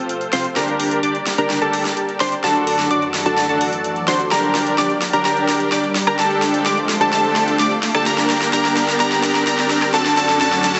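A straight 4/4 pulse at 128 BPM drives this euphoric, emotional stretch of festival progressive house in G minor, cut from a longer piece and spent entirely on a build-up with a drum fill running from start to finish. The big-room dance drum kit, layered and electronic with a huge snare, metallic hi-hats and woodblock, sounds re-recorded in a small room, with high-pass filtering on its hats, snare, percussion and room. From 0.3 s a dense, compressed supersaw riff sits up front, huge and thick with detuned sawtooth unison and a sub octave, shaped by a low-pass filter and delay. Above it, a plucky unison lead plays catchy, punchy arpeggios high in the register, full-bodied yet mellow, with a filter sweep and delay. Behind them, a lush, bright unison pad with slow attack, chorus and phaser holds sustained chords through F, Gm and D/F#, while an electronic riser climbs in the background from 0.1 s. 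The mix carries a wet scoring-stage reverb and a heavily compressed, radio-like tone capped at 8.0 kHz.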